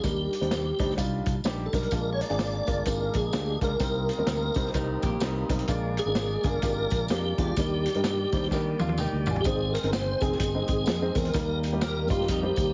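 This uptempo 1960s-style soul excerpt moves at 128 BPM in 4/4 with a swung feel and an uplifting mood, cycling through Ebmaj7, Bb7 and Cm7 before shifting to Ab and Eb. A piping, scooped tonewheel organ carries the melody up front, lightly overdriven, with chorus vibrato, key click and a slow rotary speaker. A second organ joins at 1.9 seconds with full sustained chords through a stationary speaker. Beneath them sit a woody, worn, slightly detuned upright piano, a round, dark fingered electric bass with tube saturation, and a punchy vintage drum kit on hi-hat, kick, snare and toms, with a jingly tambourine in the background. A clean, picked hollow-body jazz guitar adds a brief riff at 4.7 seconds and comes back as drum and piano fills at 8.5 seconds lead into the next section. The heavily compressed, radio-style sound has a rolled-off top, light reverb and studio ambience, which gives it a warm vintage character.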